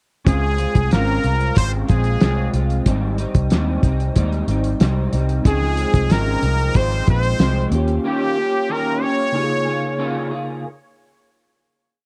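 A relaxed, straight four-four groove from a cloth-damped, thuddy drum kit settles in at 0.3 s in this laid-back, hazy piece of indie bedroom pop, its fat snare and tight kick driving a dry backbeat, gritty with saturation and a rolled-off top. A vintage muted fingered electric bass plays a round, melodic line beside it, dark and amped, and both drop out at 8.0 s. Electric guitar through a small old amp, entering just before them at 0.2 s, strums eighths in jazz chord shapes, slightly broken-up and wrapped in analog chorus with a warbly pitch drift. Up front, a brilliant trumpet states a motif-based pop melody in call phrases, punchy and forceful with vibrato, close-miked and trailed by tape echo and chorus. A mellow tine electric piano joins at 5.4 s with held rootless chords and grace notes, clean but coloured by cassette tape and heard through its built-in speakers. The whole is a dry, close, 1970s-style recording in a small room, moving from Dbmaj7 through Abmaj7 and Eb7 to settle on Db6.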